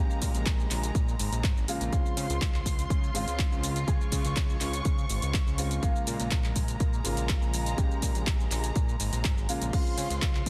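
A dry, dense and heavily limited mix frames this funky, nostalgic slice of filtered disco house, cut from a longer piece, where a layered, up-front electronic kick punches through while sidechain pumping moves through the piano, violins, bass and the drum machine's hats, percussion and cymbals. A fat, detuned sawtooth analog bass with tube saturation and a filter sweep anchors the low end, while a tape-toned analog drum machine, re-recorded in a small room, adds crash cymbal, handclaps, hi-hat and shaker. An open baby grand piano played through a phaser accompanies a lush, bowed symphonic violin section whose vibrato carries vintage 12-bit sampler grit, moving between Bbm7 and Dbmaj7 chords.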